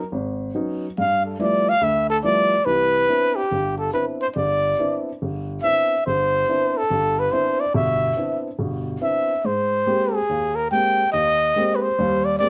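A breathy, whispered trumpet with vibrato and a soft attack carries the melody up front and close-miked, while a dark, mellow baby grand piano with audible action noise joins at 0.1 seconds to accompany it through moderate studio reverb, giving this open, spiritual swing jazz fragment an intimate feel as the harmony moves from Db9sus4 and G13 to Cmaj9 and then Abmaj9 at 9.4 seconds.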